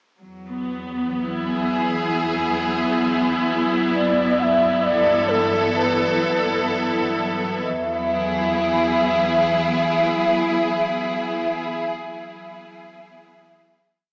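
Peaceful and warm, this short ambient piece in E major drifts at 64 BPM as a rich, lush bowed string section holds slowly shifting Eadd9 and Gadd9 chords over a dark, woody double bass section, while a breathy, mellow shakuhachi enters at 3.9 seconds with chiff-tinged call phrases trailed by tape echo and a chorused sawtooth analog drone fades in slowly in the background at 5.3 seconds, all bathed in a huge seven-second reverb and the lo-fi sound of cassette tape through a small speaker before settling on a final Eadd9 chord.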